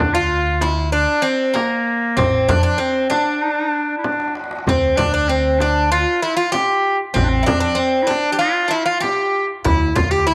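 A moderate spring reverb surrounds this soulful, melancholic passage from a Turkish makam ensemble, cut from a longer piece and moving at 96 BPM in a straight 4/4 in D makam ussak. Up front, a metallic, double-strung Greek bouzouki carries the picked melody with some octave-doubled strings, beside a bright, classical-style clarinet on the second line, while a woody, thumpy pizzicato upright bass holds the low end. A small, close and dry frame drum plays with soft hands, a deep clay-shell darbuka enters at 0.6 s from the background with hard hands in a distant large room, and a drum fill arrives at 4.0 s.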